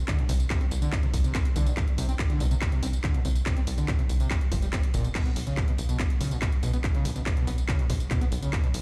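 The screaming, squelchy acid line, distorted and resonant with lush chorus and digital delay, rides over a tight, punchy sawtooth sequencer bass with tube saturation and sidechain pumping, a heavy, up-front electronic kick, and a tape-warm techno kit of crash, handclaps, hats and tambourine in this intense, hypnotic excerpt of driving peak-time techno at 142 BPM, which sits on a C5 chord until 5.2 seconds and echoes with stone room reverb, as if played on a big sound system in a bare room.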